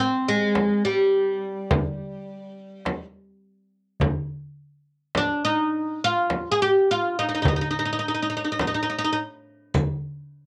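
A bright, woody fretless oud with doubled strings sits up front, carrying a melancholic, longing melody in this fragment of a Turkish makam ensemble piece at 104 BPM in 10/8. From 0.6 s a small, high clay-shell darbuka played with soft hands enters together with a deep, large frame drum that is compressed and saturated. A band-limited, vintage riq with dark jingles slips in at 9.7 s, just after the oud falls silent at 9.2 s, all captured on a home cassette recording with moderate studio reverb.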